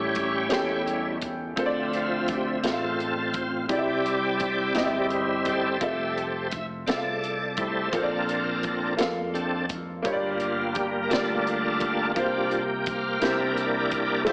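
Heard through a heavily compressed AM-radio filter and a moderate large-studio reverb, this reverent, soulful slow gospel passage in 6/8 at 57 BPM puts a bright, shouting tonewheel organ up front as the lead voice, its sustained chords turning through a slow rotary speaker and chorus vibrato, while a woody upright piano accompanies, a punchy fingered electric bass holds the low end, and a crisp fusion drum kit with dark cymbals and a punchy kick joins at 0.2 s, all moving from A7 through Dm7, Fmaj7 and Gm7 to a closing C7sus4 and C7.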